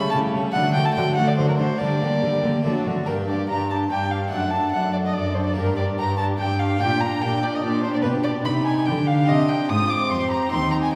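Moving in a driving triple metre with a straight feel, this stormy baroque-style concerto movement in a minor key is heard partway through, cut from a longer piece, and played on period instruments with gut-string tone. Up front, a solo violin carries the melody with an airy bow and a nasal, reedy edge, sitting high above the ensemble, while a cello section anchors the bass with a smooth-topped presence. A dark viola section fills the middle with accompaniment, and a chamber violin section adds a second line with light vibrato. Further back, a rich violin section also carries the melody in a narrow lower range, and a brilliant, full harpsichord with three sets of strings supplies plucked accompaniment. The harmony moves through dominant and tonic chords before turning toward C minor near 9.3 seconds. The whole ensemble is heard from deeper in a concert hall, with a wet reverb lingering around 2.0 seconds.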